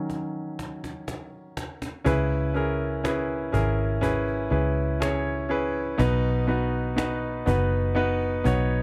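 This pop ballad excerpt moves at a slow 61 BPM in a straight 4/4, carrying a heartbroken, emotional mood. A clear, polished baby grand piano sits up front and opens the piece on a D#m7 chord, taking a solo at first while a cajon adds a fill from the distance. The cajon, struck with soft hands and fitted with snares, has a snappy acoustic sound set back in a large room. At 2.1 seconds a vintage fingered electric bass enters on C#m7, its tone dark, round and foam-muted through an amp, holding the low register beneath the piano. The harmony moves to B at 6.0 seconds, and a studio reverb gives the whole mix its sense of space.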